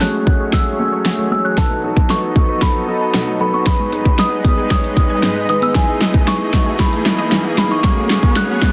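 Carefree and euphoric, this brief dance-pop build-up cut from a longer piece sets a glassy, crystalline synth bell melody with chorus and digital delay over a clear concert grand piano and a lush supersaw pad that both pump to the sidechain, a very quiet detuned unison pluck playing arpeggios, and an up-front pop drum kit with a punchy kick, fat snare and hi-hat driving a drum fill, while a filter sweep runs throughout and a background riser enters at 1.3 seconds beneath chords moving from F#madd9 through B7, G#m and Emaj7, all in a dense, heavily limited modern master with light reverb.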